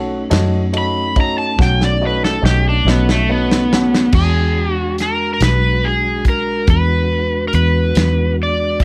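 Rollicking and soulful, this slow blues fragment in 12/8 sets a bright, overdriven slide guitar, played with fingerpicks and entering at 0.8 s, up front over a round, foam-muted electric bass, a small-room soul drum kit with dark cymbals and a tight kick that plays a fill, a soft, flute-like tonewheel organ holding chords through a slow rotary speaker and chorus vibrato, and a woody upright piano that accompanies until 4.0 s, as the harmony moves from B7 to E7 in a dark, lightly reverberant production.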